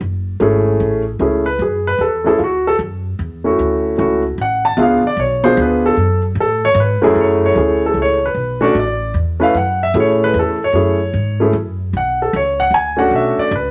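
A woody, pizzicato upright bass opens this moody, cool jazz piano trio fragment in swung 3/4 at 151 BPM in F# minor, and at 0.4 seconds an intimate, up-front concert grand joins to carry the melody as a solo across two matching passages, its audible action noise and deep low end set in moderate large-studio reverb with a softened top, over changes that run from F#m7 through Dmaj7 and C#7b9 before circling between F#m7 and Bm7.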